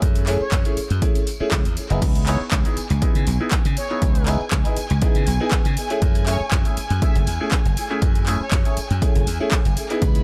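A punchy, up-front electronic kick drives this funky, sensual filtered disco house groove at 120 BPM in 4/4 with a light swing on the 16ths, joined by an overdriven house kit of bright hi-hats, handclaps and crash, and a distant tambourine in the background. Bright slap bass with tube saturation and a clear, worn grand piano with phaser and tape echo move through F#m9, C#m7 and back to F#m9. A fat, warbling analog synth brass melody sits behind them from 0.4 to 8.8 s, and a dark bowed string section with vibrato and portamento enters at 2.0 s, all under a pumping, filter-swept, echo-heavy mix with little reverb.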